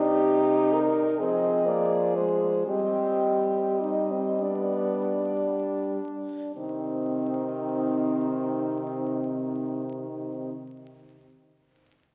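Melancholic and yearning, this brief classical fragment for horn quartet unfolds in a rubato 6/8 in C minor at roughly 25-44 BPM, slowing through its first 6.6 seconds. A mellow melody horn sings above a second line placed up front, a clear, vibrato-tinged accompaniment horn with a soft attack, and a lightly vibrato bass horn, moving from Cm through Fm and G back to Cm in a resonant concert hall and heard through the crackle of a very old 78 rpm record.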